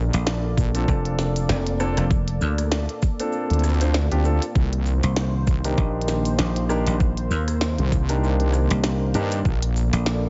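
A swung 4/4 glitch hop groove at 98 BPM struts along in C dorian, driven by an overdriven, knocking electronic kick up front from 0.6 seconds, a glitchy kit of clicky hats, rim clicks and a tiny snare re-recorded in a large room, and a grainy cabasa sitting in the background. Two basses carry the low end, a heavy, detuned sawtooth wobble bass with chorus and a bright, punchy, foam-muted thumbed slap bass with tube saturation, while a deep, moody analog pad with chorus and sidechain pumping sustains chords moving from Bbmaj7 to Cm7 at 4.6 seconds. Dark baby grand piano stabs roughened by vintage 12-bit sampler grit, tape echo and sidechain pumping give this swaggering, gritty cut from a longer piece its murky edge inside a digital ambience.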